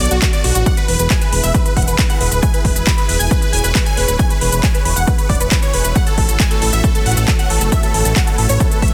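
This uplifting trance passage at 136 BPM in 4/4 is cut from a longer piece and carries an emotional, bittersweet mood over a Bm7 chord that moves to E at 0.7 s and settles on A6 at 6.0 s. Huge, lush supersaw chords carry the melody with a bright sawtooth edge, a phaser and delay. Behind them, a round analog pluck with a short decay traces a second line in the same range, treated with subtle chorus and delay. A silky, string-like analog pad holds sustained chords further back, with slow attack, vibrato and ensemble chorus. A fat, saturated analog bass sits up front, and the sidechain pumping on the pad, pluck, supersaws and bass gives them a breathing pulse. A punchy, overdriven electronic kick enters at 0.2 s beside a house kit of handclaps, metallic hi-hats and shaker, all within a dry, dense, heavily limited modern master.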